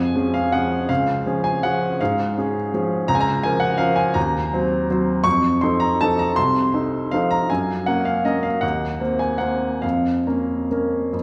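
Classical piano waltz, elegant and wistful, in a rubato 3/4 at 133-176 BPM, where a solo baby grand, clear and intimate with audible action noise and long sustain, ranges from C2 to Db6 and sits up front in a recital hall reverb heard from further back, moving from Db major into Bb minor at 3.1 s in this section cut from a longer piece.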